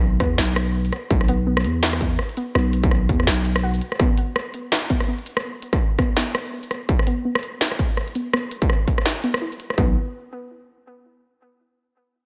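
A half-time groove with a lightly swung sixteenth-note feel drives this tense, spacious drum and bass fragment, cut from a longer piece. Up front, a distorted electronic kick and an industrial kit of clanging snare, crisp hi-hats, rim click and shaker carry a tape-saturated character, re-recorded in a large room. A growling, buzzy 808-style bass with a fast attack and decaying tail rumbles beneath until 3.8 seconds, then returns for a brief hit at 9.8 seconds. Over it, a warbly, dusty lo-fi sawtooth pluck with a noise layer plays arpeggios treated with chorus and delay, its tone shaped by a filter sweep. The harmony rests on a single power chord, and the overall mix stays dry, with little reverb.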